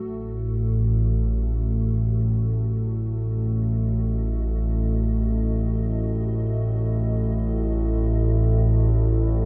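Dark ambient drone with an ominous, unsettling mood, heard in a short excerpt of about 9.5 seconds, tuned to A4 = 444 Hz. An analog drone sits up front in the low register, spanning A1 to A2, its detuned sawtooth and pulse-wave tones evolving through pulse-width modulation, with a slow attack, long release and chorus. Behind it, a dark analog pad holds sustained chords between F#4 and D#5, blending detuned square, sawtooth and triangle waves with a sub octave and a wave-folded edge. The pad is mixed well below the drone, its deep, moody character treated with chorus. Both parts play throughout, framed by light reverb and a small room ambience.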